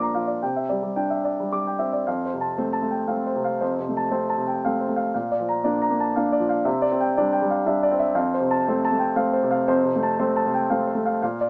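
A solo grand piano, polished and present with a short sustain, sits up front in this tender, peaceful neoclassical minimalist passage in F major, cut from a longer piece. Moving freely in rubato at 118 BPM in 3/4, it spans F2 to D6, opening on Cadd9 before a new section at 2.1 s settles into a gentle cycle of F, Bb, Cadd9 and back to F. Moderate small-room reverb and a rough, home-demo mix give the warm instrument a modest, small-speaker sound.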